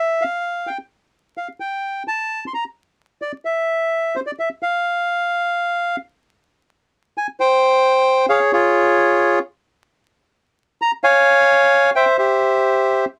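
Played in a loose, rubato four-beat feel, this short tango fragment is a passionate, elegant solo for bandoneon, whose reedy, up-front voice ranges from F4 to C6. A second passage begins at 6.5 seconds, and the harmony turns to D-flat at 8.3 seconds and to C at 11.9 seconds. The sound is dry and close, like a 1970s studio recording, with a boxy small-room character, light reverb and a layer of vinyl crackle.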